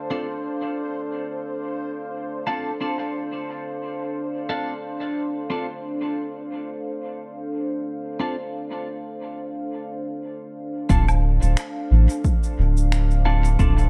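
Hazy and deep, this ambient dub excerpt opens on a dark, full-bodied pad holding a Dm7 chord with chorus and built-in reverb, while a resonant, bubbling stepped-filter texture drifts in the background and a bright, twangy twelve-string electric guitar plays stabs through phaser and dub echo. At 10.9 seconds the texture stops and the groove arrives: a punchy, overdriven kick up front, a round sub bass warmed by tube saturation, and tape-toned electronic shaker, woodblock and finger snaps carrying studio reverb and dub echo. The swung feel and the dry overall room keep the heavy low end close and intimate.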